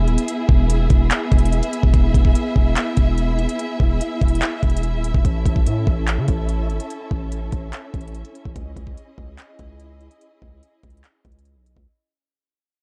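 A knocking, crisp trap drum kit with vintage 12-bit sampler grit leads this triumphant yet wistful half-time hip hop cut at 145 BPM, backed by a heavy, distorted 808-style bass and a lush, dark symphonic string section holding bowed, vibrato-rich chords over an E to A to C#madd9 progression, all in a dry, dark production that fades out across its 11.9 seconds.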